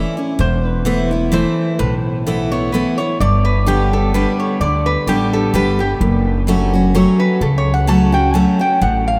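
Driving, joyful bluegrass in a swung 3/4, cut from a longer piece, where a bright, full-bodied picked dreadnought acoustic guitar and a woody, thumpy pizzicato gut-string upright bass carry the Esus4, G and F#m changes, while a metallic, nasal lap resonator guitar, played with fingerpicks and a steel bar, enters at 0.4 s to take a solo, all three sitting up front in a vast, echoing space bathed in huge ambient reverb.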